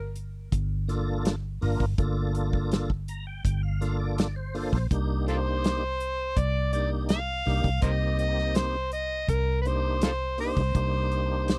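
Straight-eighth soul blues at 82 BPM in 4/4, this smoky, brooding fragment of a longer piece moves from Gm9 to Cm9 at 4.9 seconds. A muted fingered electric bass sits up front with a dark, round, punchy amped tone, joined at 0.2 seconds by an acoustic soul drum kit whose tight kick, medium-tuned snare and hi-hat carry a rolled-off top in a small room. A tonewheel organ enters at 0.9 seconds with a full, clean sound shaped by chorus vibrato and a slow rotary speaker, and plays a fill between 2.7 and 4.9 seconds. The overdriven harmonica takes the solo melody from 5.3 seconds, gritty and amplified, with light vibrato, tongue slaps and scooped notes in a jazz style. The recording is dry and close, in a 1970s studio manner with little reverb.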